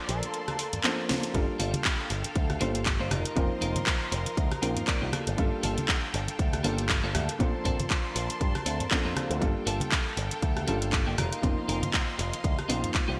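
A thick, warbling unison synth lead with delay holds a single note in the background for just over a second, over a worn, boxy baby grand piano, a lush bowed violin section and the first strokes of a house drum kit, all in a sleek, cosmic nu-disco groove at 119 BPM in G minor with a light sixteenth-note swing. After a drum fill at 1.1 seconds the punchy electronic kick arrives, and a clean, compressed electric guitar riff with chorus and delay joins at 1.6 seconds, playing a short fill around 4.4 seconds. The picked electric bass, shaped by an envelope filter, pumps against the kick alongside the distant violins, while low-tuned congas with a thick skin sit close but far back in the mix. The piano's short sustain and audible action noise give the accompaniment an intimate, filtered feel over chords moving through Bbmaj9, Gm9 and F7sus4. A cracking snare with gated reverb, handclaps, rim clicks and hi-hat, plus a moderate hall reverb, lend this fragment of a longer piece a bright, 1980s-style digital sheen.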